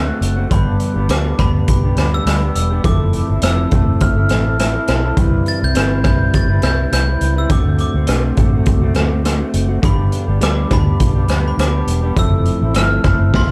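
Indie bedroom pop at 103 BPM with a sunny, laid-back, lightly swung feel, where a sparkling, bell-like glockenspiel melody with chorus and delay rings over a dark, slightly broken-up lo-fi electric guitar steeped in lush chorus and vibrato, a round, foam-muted fingered bass, and a gritty, punchy garage drum kit that enters at 0.2 s up front in a small room, cycling through D7, G, Fmaj7 and Cmaj7 before a drum fill at 13.3 s in this warm production cut from a longer piece.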